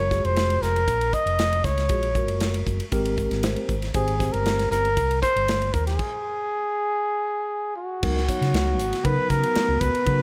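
A breathy, up-front trumpet opens this soaring, slick electric jazz fusion excerpt, joined at once by a mellow tine electric piano and a round, amped fingered bass, with a small-room acoustic drum kit entering a moment later on hi-hat, ride, crash, snare and tight kick. The trumpet carries the solo melody in a dark jazz style, colouring its notes with light vibrato and scooped attacks. Beneath it, the clean electric piano moves from Gbmaj9 to Abmaj9 and slips in a short fill at 3.2 seconds before dropping away. The band hits a stop at 6.0 seconds, and when the harmony shifts to a Db13sus4 the electric piano returns. A glassy FM pad with slow attack, ensemble chorus and its own reverb drifts in at 8.9 seconds, sitting ethereal in the background under a light overall reverb.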